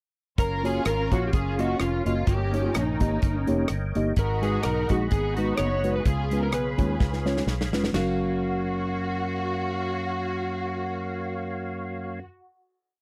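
An uptempo, jubilant gospel piece in F# major at 127 BPM opens at 0.4 s with a lush, dark string section and a slightly broken-up electric slide guitar carrying soulful melodic phrases. Beneath them sit a fat, percussive tonewheel organ pad with key click, chorus vibrato and slow rotary speaker, a round, foam-muted fingered bass walking and running with slides and chromatic approach notes, and mellow tine electric piano chords on the off-beats. An up-front studio drum kit with bright cymbals and a punchy kick drives a swung two-beat praise groove until a fill at 7.0 s, then stops at 8.1 s as the band holds a final F#maj7 chord in a dry, close 1970s-style studio sound.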